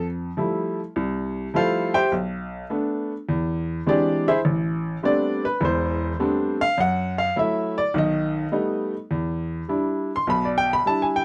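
A clear, woody upright piano with audible action noise plays alone, up front and intimate, in this moody, cool solo jazz fragment cut from a longer piece, swinging at 103 BPM in 4/4 across a range from E1 to C6 through chords such as Fmaj9, E7alt and Am11 before settling on Em7 at 9.1 seconds, all framed by light reverb and a dark production.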